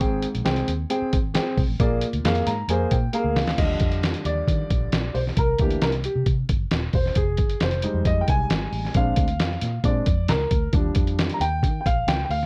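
A woody, open upright piano stands out in this joyful, uplifting uptempo 1960s-style soul excerpt at 134 BPM in Eb major, adding a fill at 2.2 seconds before taking a solo from 3.6 seconds over Ebmaj7, C7, Fm7 and Bb7 changes, backed by a round, foam-muted vintage electric bass and an up-front, muffled lo-fi sampler-style drum kit with a thumpy kick and tape-warm tone that plays its own fill at 3.1 seconds, all set in a dark production with light reverb.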